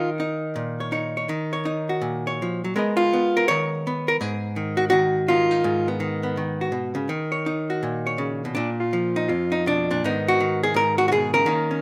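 A lone archtop guitar opens this short solo jazz fragment, miked and amplified, with a dark, clean, hollow-bodied electric tone that sits up front in the sound. The mood is late-night and swinging, with a relaxed swung eighth-note feel and a rubato sense of time that lets it stretch and breathe. The picked lines and chords span from the low F2 up to Eb5, moving through Ebm7, Abm9, back to Ebm7, then a bare Bb5 and Abm7 across its 11.8 seconds. Light reverb surrounds the guitar with a touch of room, keeping the intimate, unaccompanied character intact. As a fragment cut from a longer piece, it captures a single passage rather than a complete performance.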